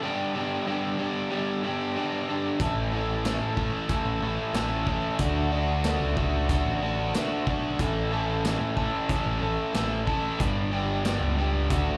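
Confident and driving, this classic rock fragment in A mixolydian moves at 92 BPM in a straight 4/4, with a bright, double-tracked overdriven electric guitar riff playing alone until the growling picked electric bass and a vintage drum kit of hi-hat, kick and snare join at 2.6 seconds. The guitar sits up front with a slapback echo, while the bass adds its own overdrive and the gritty, saturated drums have a rolled-off top and a tight kick. The chords cycle from G through A and D and back, all heard as a live gig through the venue's PA with a light club reverb.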